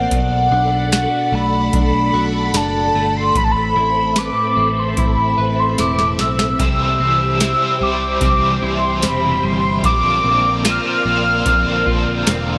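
Dream pop with a dreamy, blissful glow, led by a velvety, up-front synth lead carrying the melody through chorus and delay over swirling, vintage phased string-machine chords, lushly chorused clean electric guitar arpeggios, a round, punchy picked electric bass and a booming analog drum machine with deep kick, crisp snare, metallic hats and tambourine, whose fill at 5.8 s ushers in a bright, overdriven stack guitar with tremolo and analog chorus at 6.6 s, the whole band sitting in a moderate scoring-stage reverb as the chords move from Bm7 through Amadd9 and C to Bbadd9.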